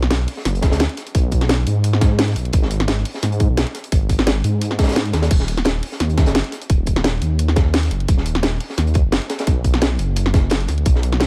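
Lush and melancholic, this liquid drum and bass excerpt is carried by a deep, rumbling detuned saw bass whose beating sawtooth tone sits up front with sustained notes and a fast attack. A produced garage drum kit with a cracking snare and bright hats is layered over a gritty, saturated breakbeat kit whose high-tuned snare and rolled-off top sit further back in a small room. A tight electronic kick enters at 0.6 seconds and drops out briefly at 5.0 seconds before returning.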